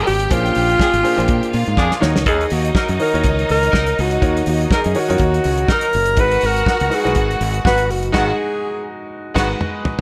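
Lush bowed strings, a clear grand piano and mellow, distant horn stabs with slapback echo open this driving, glamorous disco excerpt at 123 BPM in G# minor, joined at 0.1 s by a breathy alto saxophone melody with subtone and scooped notes, a bright, punchy fingered electric bass and a damped 70s drum kit with a fat snare and dark cymbals, whose fills land at 1.8 s and at 9.1 s, the second under a closing band accent, as the harmony moves through A#7, D#m7 and G#m7 in light reverb.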